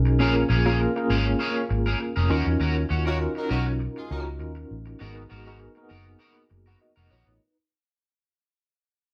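This short pop excerpt at 100 BPM opens on a worn, slightly out-of-tune tine electric piano with medium tremolo and analog chorus, over a dark, foam-muted vintage fingered bass sitting round and up front, while a twangy electric guitar at the edge of break-up plays a picked riff through lush chorus. Moving through Bbm7, Ebm7 and Abm9 with a light swing on the sixteenths, the nocturnal, slick groove gains a tight jazz-style horn section with light vibrato as a brief second line from 3.1 to 4.2 seconds. Light reverb surrounds the parts, and the whole passage fades out across its 7.4 seconds.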